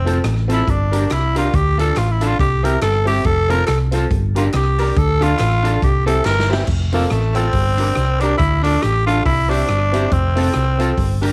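Ska at 140 BPM in F major, this bouncy, upbeat clip from a longer piece swings its eighth notes and rides a repeating F, Gm, Dm, C progression through two passes of the same section. A growling tenor saxophone takes the solo from the start, sitting up front with a raspy, gritty edge, a clear core and light vibrato in a pop style. Beneath it, a hollow-body short-scale electric bass played with the fingers sounds dark, round and punchy, also placed up front. An electric guitar at the edge of break-up picks its accompaniment in the background, while a woody upright piano adds intimate stabs with audible action noise. A swinging big-band drum kit, carrying a slapback echo across its punchy kick, medium-tuned snare, rim clicks, hi-hat and crash, plays a fill from 6.3 to 6.7 seconds, and a very quiet, crisp group handclap drops out at 6.4 seconds. Light reverb, small room ambience and vinyl crackle surround the whole.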